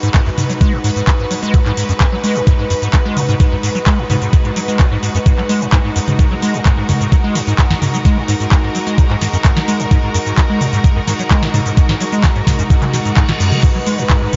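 Gritty and driving, this acid house clip sets a squelchy, resonant square-wave acid bass riff, treated with overdrive, chorus, cassette tape grit and diffuse ambient delay, against rich bowed studio strings holding sustained G#m7 chords with light vibrato, both pumping to an up-front, thumpy sampler-style kick while a booming analog drum machine adds a tonal snare, metallic hats, handclaps, cabasa, toms and crash, and a background reverse cymbal sounds at 13.0 seconds, all within a dreamy, reverb-soaked mix with a dark, rolled-off top.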